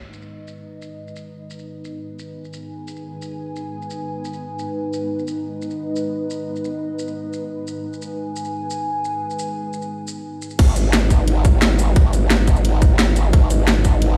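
Dark technical drum and bass at 175 BPM in G# minor, tense and dark in mood, this excerpt opens with a deep, moody analog pad holding a sustained G# minor chord, its detuned, wave-folded tone thickened by lush chorus and pumping against the sidechain, while an overdriven drum kit with a cracking snare, bright hats, shaker and crash sits up front under low-pass filtering. At the drop at 10.6 seconds, a tight, overdriven electronic kick and an aggressive, wobbling growl bass on G#1 arrive, the bass saturated, compressed and formant-filtered with chorus. The whole track rings out as if played on a big sound system in a bare stone room, with light reverb.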